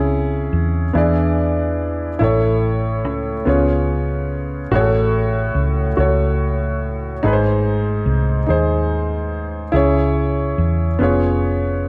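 Solemn and soulful, this slow gospel passage in 6/8, cut from a longer piece, moves at 48 BPM, with a clear, woody upright piano of vintage character and long sustain sitting up front in accompaniment, while a dark, round, amped hollow-body short-scale electric bass played with the fingers holds the low end throughout the 11.9 seconds, both tuned to A4 = 444 Hz and set in a moderate large-studio reverb as the chords travel from C#m through E7, A, C#7, F#m/A and G# before returning to C#m and closing on C#7/E#.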